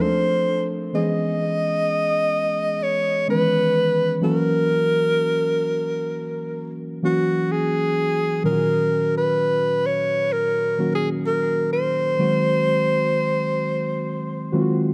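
A breathy alto saxophone carries the melody up front throughout, its close-miked, whispered tone shaded with vibrato, scooped notes and analog delay in a jazz-style solo voice. Beneath it, muted felt-like synth keys supply soft, dark accompaniment with a chorus sheen and fast, decaying attacks, moving through minor-seventh and dominant chords such as C#m7, F#7 and D#m7. This slow, swung R&B fragment, cut from a longer piece, feels longing and moody, set in a small room with light reverb and an echo-heavy mix.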